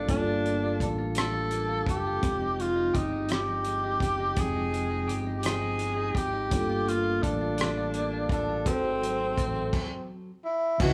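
A breathy, whispered tenor saxophone carries the melody up front, with vibrato and scooped notes, in this slow, late-night R&B piece in 6/8 at 56 BPM. Its yearning line moves over Gm9, Fm9 and Ab7b9 chords. A clean, compressed electric guitar picks a second line while a mellow tine electric piano supplies accompaniment, and a deep, round, punchy dub bass sits underneath a damped 70s kit with dark cymbals, a tight kick, hi-hat, rim click and crash. The band plays live in a wet stone room, and a stop arrives at 9.7 seconds in this short cut from a longer piece.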